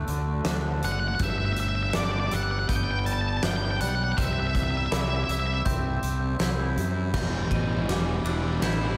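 An octave-fuzz lead guitar carries the melody up front, its dark, distorted tone trailing tape echo as it enters at 0.8 seconds and falls away at 5.6 seconds. This is a cathartic, melancholic stretch of post-rock in a straight 4/4, cut from a longer piece and moving from D to G to C before settling on Em7. Underneath, a twangy, compressed electric guitar plays clean arpeggios through lush chorus and tape echo. A bright glockenspiel struck with brass mallets sparkles in the background with slapback and tape echo. A glassy FM pad holds very quiet, ethereal chords. A growly fuzz bass sits up front, while a huge arena drum kit with a fat snare, punchy kick, hi-hat, ride and crash fills the hall-like space. In the closing seconds the drums build with a fill, and a raw, overdriven garage guitar riff with slapback echo arrives at 7.1 seconds, giving the whole an arena-sized sense of release.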